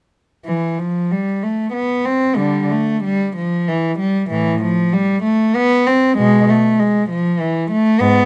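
Set in a flowing 3/4 at 95 BPM with a rubato feel, this short fragment cut from a longer piece is a baroque-style suite movement for unaccompanied cello in a classical vein. A single bowed cello carries everything as the solo voice, playing from 0.5 to 8.3 seconds and ranging from G#2 up to C4. Its tone is warm and expressive, with vibrato, a soft attack and portamento gliding between notes. The instrument sits up front, captured by close, detailed microphones, with light reverb adding a touch of space. The mood is serene and flowing throughout.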